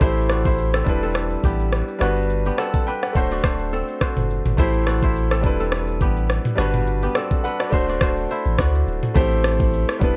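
Afrobeats with a sultry, smooth mood and a lightly swung groove, cut from a longer piece that cycles through Am7, Em7, Gmaj7 and D7. A clear, intimate concert grand piano with audible action noise carries the accompaniment, and a bright, fingerpicked kora riff rings through a delay. Beneath them sit a deep sine sub bass with a pitch-drop attack and an electronic afro-pop kit of knocking kick, metallic hats, rim click, shaker and toms, re-recorded in a large room, while the whole mix sounds dry and worn, like warbling old cassette tape with a dulled top end.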